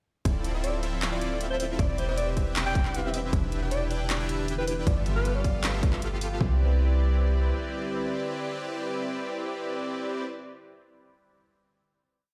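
Future bass at 156 BPM in a half-time 4/4 feel, this lush, playful C major piece opens its drop at 0.3 seconds with a fat, detuned sawtooth polysynth playing dotted-rhythm chords with chorus and dub echo. Beneath it sit a boomy 808-style bass, an overdriven hard-clipped kick, and a trap kit with bright hats, hat rolls and claps. A breathy alto saxophone plays short jazz-style phrases with vibrato and scooped notes, and a mellow, ethereal pad sustains in the background through Dm9, Cmaj9/E, Em7 and G13. The drums stop around 6.4 seconds, leaving the synths to ring out on a final Cmaj9 in a stone room.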